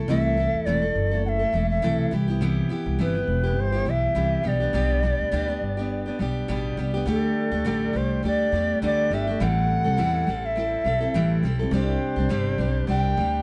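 Sunny and easy-going, this acoustic pop excerpt at 103 BPM in 4/4 with a light sixteenth-note swing puts a full-bodied, picked dreadnought steel-string guitar and a growly, woody pizzicato upright bass up front, while an airy, reedy bamboo shakuhachi enters at 0.1 seconds with a tongued, vibrato-tinged melody over chords moving from Am through Cmaj7 and G into Dsus4, Am7 and Csus2, set in a dark, warm production with moderate studio ambience.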